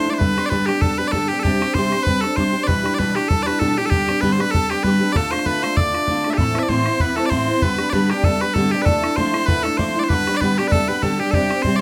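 Piercing, up-front bagpipes carry the melody from the first moment of this wild, spirited Celtic reel excerpt at 194 BPM, shadowed by a very quiet, airy, reedy metal whistle with vibrato and backed by a picked steel-string acoustic guitar and an open, boomy bodhran. At 6.4 seconds, as the section repeats, a metallic, double-strung Irish bouzouki joins in the background with a second line. The swung eighths drive through chords that keep returning to G, with a moderate studio ambience around the ensemble.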